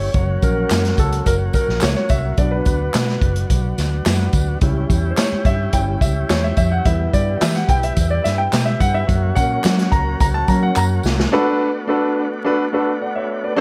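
Driving and passionate, this uptempo 1960s-style soul cut moves at 107 BPM in a straight 4/4, taken from a longer piece. A concert grand piano with a deep, natural low end sits up front and takes a solo from the start until 11.3 seconds, while a smooth tonewheel organ holds sustained chords underneath through a slow rotary speaker with vibrato. A dark, round, foam-muted electric bass, amped and fingered, anchors the low end alongside a big-band drum kit that sounds roomy and distant yet up front, with a boomy kick, a medium-tuned snare and hi-hat. Close, dry tambourine, tube shaker and group handclaps add a light layer of percussion. The harmony runs from F# through Bm, C#dim and Em back to F#, and a drum fill at 10.8 seconds leads into a brief closing passage on Bm7 where piano and organ ring on alone until 13.6 seconds. The sound is dry with little reverb, and vinyl crackle lends it a vintage patina.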